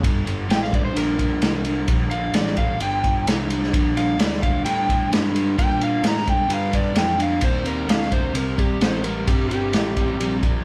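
Recorded as a band playing live in one room with moderate studio reverb, this brooding, heavy blues rock and southern rock excerpt at 130 BPM in G minor sets a dark overdriven slide guitar solo, played with fingerpicks from 0.5 seconds, over a crunchy double-tracked riff guitar, a round fuzz-driven picked bass and a muffled, lo-fi vintage drum kit of tight kick, snare and dark ride sitting up front, moving from Gm to Cm at 7.4 seconds.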